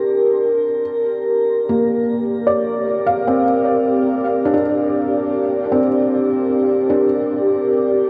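Ambient excerpt in free time and G minor, serene and spacious, where a warbly, nostalgic tape-like pad holds sustained Gm chords with chorus and a filter sweep while a soft, felt-muted upright piano plays intimate arpeggios through diffuse delay, both parts bathed in shimmer reverb and sitting up front in a huge, wet ambient space with worn cassette pitch drift across all 8.1 seconds.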